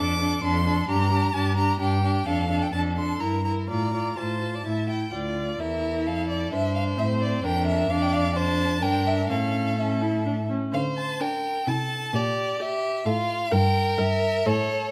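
A bowed violin carries the melody up front, its clear, vibrato-touched tone reaching up to D6 in this stormy, dramatic stretch of a quick classical-period string quartet movement in triple time. A second violin traces a focused line beneath it, set at a distance in the blend. The viola fills in the accompaniment with a rich, smooth-topped sound. The cello anchors the bass from D2 to D3, also sitting up front with a full body. The feel is rubato, and the harmony shifts from an opening passage into a second section at 5.1 seconds, where minor chords give way to brighter major ones before settling back on a minor chord near the end. A moderate recital hall reverb surrounds the quartet, and the music is cut from a longer piece, with all four players sounding throughout its roughly 15 seconds.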